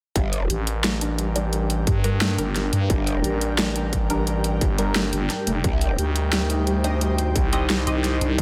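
A thick, growling FM bass sits up front from 0.5 seconds, its tube saturation giving weight to this tense, futuristic slice of dark technical drum and bass in a straight four. Alongside it, an aggressive, wobbling growl bass, distorted and chorused through a formant filter, bursts in for short stabs. A distorted, layered electronic kick and a dubstep kit with a huge snare and bright hats, both tape-warm, drive the track from the start, the kit placed up front. In the background, a felt-muted upright piano plays soft, intimate arpeggios through a low-pass filter and tape echo. An airy, breathy pad with phaser hovers from the opening moments, a nasal, filtered dub chord stab whose moving notch and tape echo add motion arrives at 1.4 seconds, and a deep, moody ambient pad of detuned sawtooths with a sub octave enters at 1.7 seconds with sustained chords. The pads and piano pump against the sidechain, and the harmony shifts at 5.6 seconds, all within a dreamy, reverb-soaked mix that carries a church-like tail.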